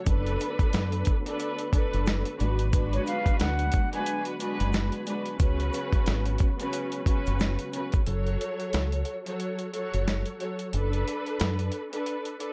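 Dusky, woody bowed strings with a cassette-tape tint and a soft, mellow tonewheel organ swirling through a fast rotary speaker in the background open this moody boom-bap hip-hop cut at 90 BPM in F# minor, joined at once by a gritty, overdriven sampler-style kit with a thumpy kick, a round, punchy dub bass, a very quiet grainy egg shaker, and a breathy flute phrase with tape echo from 2.9 to 4.2 seconds, before a break at 8.1 seconds leaves the strings, bass and drums riding the swung 16th-note groove.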